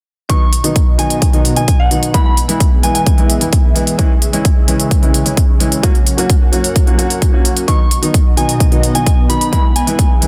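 A dense, heavily limited modern master with light reverb and digital ambience carries this triumphant, uplifting slice of festival progressive house at 130 BPM in B major, tuned to A4 = 435 Hz, moving through B, E, C#m and F# before returning to B and E. A punchy, up-front electronic kick and crisp, tape-warm hats re-recorded in a large room drive the straight 4/4 from 0.3 seconds, while a natural baby grand piano with short sustain plays pumping, delayed accompaniment and a thick, detuned sawtooth-and-square unison pad with a sub octave enters at 0.6 seconds, sustaining chorused, phased chords in the background under a filter sweep. Above them, a soft, pure FM bell with fast attack and a dark, chorused, delayed decay sings the melody in two short phrases, the second arriving at 7.7 seconds.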